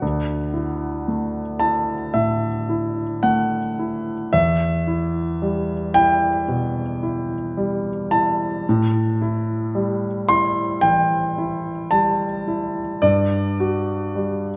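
Played rubato around a slow 55 BPM in 4/4, this short classical fragment is an impressionist solo piano piece in E minor, cut from a longer work. Its mood is hazy and mysterious. A concert grand carries everything on its own from 0.0 to 14.6 seconds, ranging from D2 up to C6. Its sound is intimate, natural and up front, with deep bass and audible action noise that brings the instrument close. The harmony drifts from Dadd9 to Em, then to A5 and G5. A moderate scoring-stage reverb of about 2.0 seconds gives the notes a soft halo, and the tuning sits slightly high at A4 = 445 Hz.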